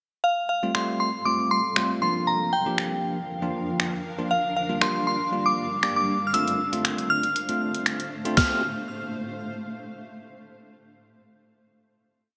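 A glassy, crystalline FM synth bell with chorus carries the motif-based melody up front from 0.2 seconds in this euphoric, upbeat dance-pop piece in F major at 118 BPM, moving over Fadd9, Bb, Gm7 and Dm7 before settling on a final Fadd9 chord at 8.4 seconds. Beneath it, a bright, clean tine electric piano plays close-voiced syncopated chord stabs with sidechain pumping, while a cloudy, evolving granular pad holds detuned, mellow sustained chords that also pump with the beat. A gated 80s digital drum machine drives a four-on-the-floor pattern with a thumpy kick, an overdriven gated-reverb snare, hi-hat and finger snaps, all set in a lush hall reverb.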